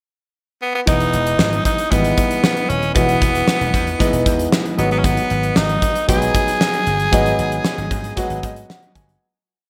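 Moody and nostalgic, this short 1980s-style pop piece opens with a raspy tenor saxophone stating its motif-based melody in a brief pickup before the band arrives at 0.9 seconds. The gated 80s drum kit sits up front with a punchy kick, a fat snare and a big backbeat, the whole kit framed by gated room reverb. A vintage slap bass plays a syncopated pop-funk line with chromatic approach notes, while a clear grand piano pushes close-voiced chords decorated with grace notes and short fills. The saxophone stays gritty and forceful with light vibrato, its call phrases floating over a move from Emaj7 to G#m7. The production is bright and digital, with plate reverb and small room ambience, and the music fades out from 7.1 seconds as the piano adds a final fill.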